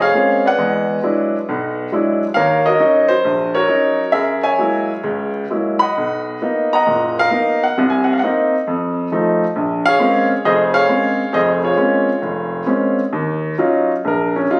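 A clear baby grand piano carries this short solo jazz excerpt alone, its intimate, natural tone sitting up front with the audible noise of its action close at hand. The mood is moody and late-night, set in Bb minor at 134 BPM in 4/4, with a 67% swing on the eighths loosened by rubato. The harmony moves through Bbm9, E9, Ebm7, Gb9 and Bmaj7 before Cm7b5 and F7 lead back to Bbm9, and the playing spans from F1 up to Cb6. At 13.1 seconds a new section begins on Ebm9, and the piano takes a solo turn until the clip cuts off at 14.6 seconds, trimmed from a longer piece. The sound carries the closeness of a phone recorded in the room, dressed with light studio reverb and compression.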